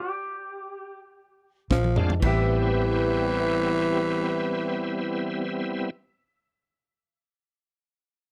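A clean, twangy lap steel guitar opens alone with slide and volume swells through tape echo, setting a mournful, brooding mood in this free-time soul blues in A minor. At 1.7 seconds a tight funk drum kit with a high-tuned snare plays a short fill as a dark, round, foam-muted electric bass and a raspy, growling tenor saxophone come in over a Bb7 chord. From 2.0 seconds a bright, shouting tonewheel organ with slow rotary speaker, key click and light overdrive sits up front beside the sax as the harmony moves to Am9, while a slightly broken-up, lo-fi electric guitar adds stabs in the background of this dry, close 1970s-style studio recording.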